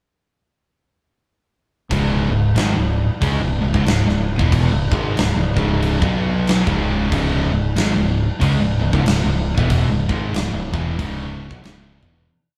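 Up front from 1.9 seconds, a big acoustic rock drum kit with a fat snare, punchy kick and rolled-off top drives a brooding, hypnotic stoner and doom metal riff at 93 BPM in C# minor with a swung 4/4 feel, as a growling, overdriven fingered bass doubles the power-chord riff in quarters beneath two dark, thick fuzz guitars, one very quiet, and a bright, double-tracked distorted electric guitar set back in the mix, all sounding like a band playing live in one room with light reverb, before the piece fades out from 9.7 to 12.3 seconds.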